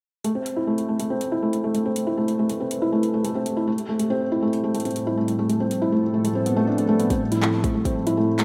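A felt-muted upright piano opens this glitchy, cerebral IDM fragment in A minor at 140 BPM, playing dark, intimate arpeggios up front with audible action noise, tape echo and a filter sweep, over a booming analog drum machine's handclaps and metallic hats. At 1.8 seconds a swirling, detuned sawtooth pad fades in with sustained chords through phaser, chorus and its own filter sweep, moving from Am7 to Fadd9/A and Fmaj9/A, while a deep electronic kick drum appears at 7.1 seconds. A lush hall reverb bathes the rough home demo mix, which is cut from a longer piece.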